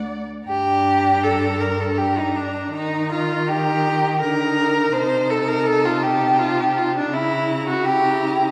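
A wet scoring-stage reverb with a 2.1-second decay surrounds this slow, elegiac movement for string quartet, a short passage cut from a longer piece in G minor at 82 BPM in 3/4, played with rubato and tuned to A4 = 438 Hz. All four bowed players have a rich tone with vibrato and play from the start. The melody violin sits in the background, singing high between A5 and Bb5 with a smooth top and expressive portamento. The second violin is up front, its focused line spanning D4 to D5 with a distant quality. Beneath them, the viola's close, soft-attacked accompaniment and the cello's bass, ranging from D2 to Eb3, both glide with portamento. The yearning harmony passes from Gm to Eb, then through Adim/C to a C#dim7 at 7.1 seconds.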